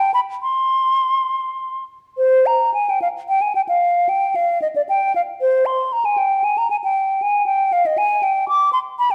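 A hollow, airy concert flute plays alone and up front from the first moment, its crisp attack and vibrato shaping an introspective, flowing baroque-style fantasia in C minor, moving in a rubato 3/4 at roughly 98-119 BPM between C5 and D6. After an opening phrase, a new passage begins at 2.2 s and carries through to 9.1 s, in this brief cut from a longer piece. The close-miked flute sits within a wet recital-hall reverb, and the production is dark and warm.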